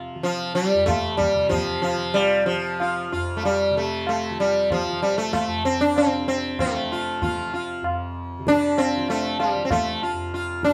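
A bright, buzzing sitar sits up front, its sympathetic strings shimmering as it carries the melody of raga bhupali in F over a softly plucked, warm tanpura drone and low-tuned, short-ringing tabla, in a devotional, radiant Hindustani excerpt at 95 BPM in 3/4 that speeds up throughout, played live together in a reverberant studio room.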